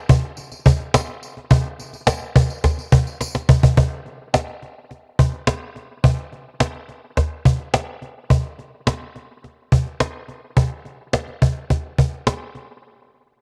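A straight 4/4 pulse at 106 BPM drives this short pop excerpt, carried by a cajon that plays from 0.1 s to 12.6 s. The cajon sits up front, close and dry, with a snappy snare-laced attack from hard hands and a cassette tape coloring on its sound. A jingly, bright tambourine adds a layer in the background during the opening, stopping at 3.6 s, after which the cajon carries on alone. A drum fill arrives at 3.2 s and leads into the second section, which begins at 3.8 s. The mood is nostalgic yet glossy, and the whole has the feel of a home recording on cassette, with light reverb and a small room ambience.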